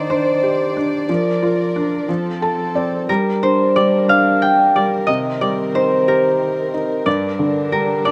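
Swaying in a straight 6/8 at 60 BPM counted in dotted quarters, this gentle, sleepy children's lullaby is tuned to A4 = 438 Hz and moves from Cmadd9/Eb through Bb/F and F to Gm, Cm7 and back to Gm. An up-front concert harp carries the fingerpicked, ringing melody with a mellow tone. A soft, felt-muted upright piano with audible action noise and a slapback echo supplies intimate accompaniment and a fill from 2.1 to 3.1 seconds, while a warm chamber string section holds bowed sul tasto chords with light vibrato under light reverb in an outdoor recording.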